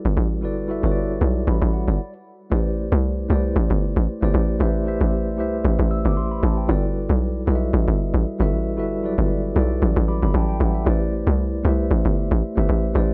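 A digital ambience surrounds this late-night, soulful amapiano excerpt at 115 BPM in A dorian, where a mellow tine electric piano plays up front through built-in speakers with clean chords moving between Em11/G and Am11, a hollow, bouncy log drum bass with a fast attack and noisy FM bite carries the low end, and after a brief stop at 2.0 seconds the drop lands at 2.5 seconds, with an electric piano fill at 9.8 seconds.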